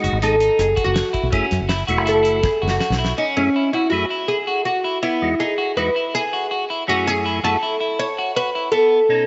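In 5/4 at 162 BPM in F# dorian, this brooding, intricate progressive instrumental sets a woody, plectrum-plucked oud melody up front over a percussive, lightly overdriven tonewheel organ with fast rotary swirl, bright, twangy guitar arpeggios at the edge of break-up, and a punchy foam-muted bass with a dry 70s kit that launches a drum fill at 2.4 seconds before dropping out with the bass at 3.1 seconds. Everything is bathed in moderate plate reverb as the chords move from F#m7 through Emaj7 to a closing B7 in this short cut from a longer piece.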